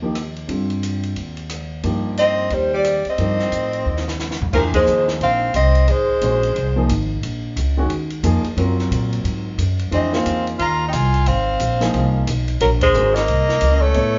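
A passage cut from a longer modal jazz piece opens with a warm, intimate grand piano comping over a woody, growly pizzicato upright bass that sits up front. A compact cocktail drum kit joins almost at once, sounding dry and natural with dark cymbals, a high-tuned snare and a punchy kick. The tune swings briskly at 178 BPM in 4/4, and its searching, hypnotic mood settles into F phrygian at 4.5 seconds, just after a drum fill, with a band accent landing soon after. At 2.2 seconds a mellow soprano saxophone carries the melody in a jazz style with vibrato, subtone and scooped notes. Beneath it a bright tenor saxophone with a soft attack plays a second line. Both horns drop out for a stretch and return together at 9.9 seconds, and the whole group sounds like a live band sharing one large studio with moderate reverb, the piano's action noise audible.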